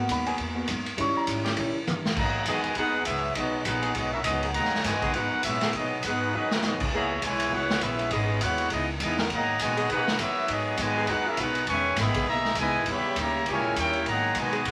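The clear, close-miked trumpet section carries the melody from 2.2 seconds, tight and up front with a light vibrato, over a fast big band swing at 202 BPM in G# minor with a swinging, dramatic mood. A clear grand piano opens this excerpt with a brief solo, sketching G#m7 to D#7b9 before dropping out at 1.7 seconds, and a drum fill at 1.9 seconds ushers in the trumpets and trombones. The smooth-topped trombone section adds a second line, while a warm, tight saxophone section holds sustained chords in the background. A woody, growly pizzicato upright bass and a very quiet picked steel-string acoustic guitar fill out the rhythm section, and the drum kit plays with a punchy kick, a medium-tuned snare and a rolled-off top, with a second fill at 6.3 seconds. The changes move through C#m7, Emaj7 and D#7b9 back to G#m7, all heard in a moderate large studio reverb with a layer of vinyl crackle.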